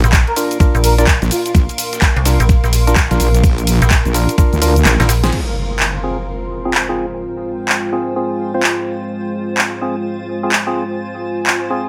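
Swung sixteenths drive this gritty, aggressive bass house cut: an overdriven, knocking electronic kick and a big-room kit with a huge snare, handclaps, hi-hat, ride, crash and cabasa sit up front, while a very quiet, tape-dusted sampler kit of hi-hat and snare lies underneath. A metallic FM bass and a detuned, saturated wobble bass pump with sidechain through the opening drop; a breathy, flute-like lead with tremolo and dub echo appears briefly, and hollow organ stabs, a dark, moody analog pad and a bright granular cloud pad fill out the harmony. The kick drops out as a drum fill leads to a band accent at 5.2 seconds, then an electronic impact lands at 5.3 seconds as the chords shift and the pads and stabs carry on to the end.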